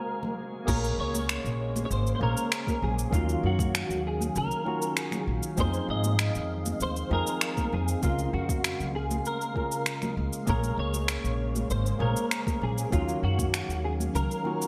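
A bright, 1980s-style digital sheen and a moderate plate reverb frame this wistful, relaxed sunset chillout piece, cut from a longer track. A clean, fingered electric guitar carries the melody with a compressed tone, treated with ensemble chorus and delay, while a barky tine electric piano heard through a combo amp supplies delayed accompaniment. Beneath them, a shimmering, ethereal pad holds sustained chords in the background, its detuned, granular tone softened by chorus and an octave-up glow, and a very quiet glassy texture of drifting overtones appears only until 0.7 s. Bright, high-tuned congas sit distant in a large room from 0.2 s, and at 0.7 s a woody, dark upright bass enters up front, played pizzicato with a touch of tube saturation. A layered, overdriven deep house kit of cabasa, crash cymbal and finger snaps, with gated and studio reverb, rides alongside a soft electronic kick, as the harmony moves from a dominant ninth through minor ninth, minor seventh and sixth chords.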